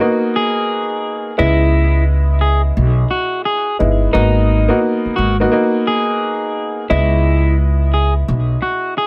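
Hip hop with a reflective, dark mood and a swung feel, cut from a longer piece, opening on a worn, slightly detuned upright piano that carries the minor ninth chords from the start. An electric guitar at the edge of break-up enters at 0.4 seconds with a fingered, gently broken-up melody through tape echo, and a pizzicato upright bass with thumpy gut strings arrives at 1.4 seconds, sitting prominently in the mix. A moderate studio reverb gives the piano, guitar and bass an intimate, up-front presence.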